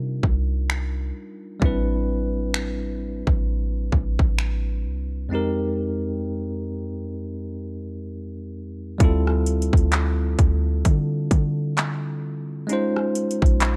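Swung sixteenths in a slow 4/4 drive this late-night, moody slice of contemporary R&B, cut from a longer piece, with an overdriven, up-front trap kit of hard-clipped kick, metallic hi-hat, finger snaps, handclaps and rim clicks that enters at 0.2 seconds. Beneath it a deep, boomy 808-style bass carries a sine body with a noise layer, a fast attack and a decaying tail, while a bright, bell-like tine electric piano, clean and direct, voices drifting minor eleventh chords. The dark, dry production moves into a break at 5.3 seconds and a new section at 9.0 seconds.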